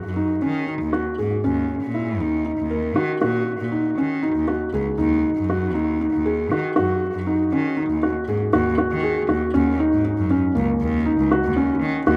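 Set in a straight 7/8 at 237 BPM counted in eighths, this contemporary chamber piece has an urgent, hypnotic pull, and it is cut from a longer work. A felt-muted upright piano carries the arpeggios in a mellow, intimate voice, sitting up front between Bb3 and Bb4 from the opening moment. A single bowed cello holds the bass line from Db2 to Eb3, its tone clear and focused with vibrato, also placed close and forward. The harmony stays rooted in Eb minor, tuned to A4 = 441 Hz, moving between Ebmadd11 and Ebm7, with a new section beginning at 8.5 seconds on the Ebm7 chord. A wet cathedral reverb with a long 5.6-second decay surrounds the duo, placing them in a vast, echoing space until the close at 12.2 seconds.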